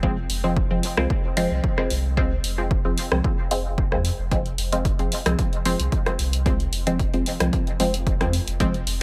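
Meditative and cavernous, this dub techno excerpt in straight 4/4 rests on a single minor chord, voiced by a muted, detuned sawtooth-and-square dub chord stab with a filter sweep, phaser, sidechain pumping and dub echo, over a smooth, dark sine sub bass with tube saturation and its own pump, while a punchy electronic kick re-recorded in a small room and an analog drum machine's hi-hat and rim click, entering at 0.3 seconds, fill out a lightly reverberant space.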